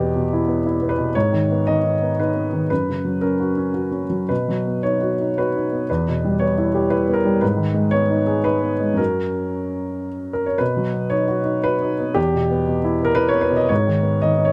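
An upright piano carries this whole fragment alone, its woody, vintage tone placed up front and caught by close, detailed microphones that let the clatter of its action come through. This neoclassical minimalist piece moves in a three-beat metre, played with a rubato feel that lets the time breathe. The harmony cycles patiently through Em, G#m, F# and B, and the same phrase returns at 10.6 s, giving the music a calm, circling quality. The piano spans from a deep E2 up to D#5, and its smooth sound sits in a light reverb that keeps the space close and private. The mood is intimate and tender, and this passage is cut from a longer piece, ending at 14.5 s.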